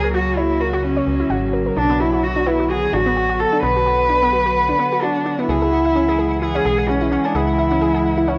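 Wistful yet playful, this IDM excerpt at 129 BPM with a light 16th-note swing puts a dark, woody bowed cello melody with vibrato up front, colored by cassette tape and analog delay, over a warbling, detuned tape-like pad with chorus and phaser, a nasal, dusty sawtooth pluck spinning arpeggios through a filter sweep and delay, and a metallic FM bass, while a pulsing, tempo-synced triangle texture joins in the background at 1.8 s, all set in a moderate spring reverb with a lo-fi home-cassette character as the chords move from F#/C# to Bm and C#m.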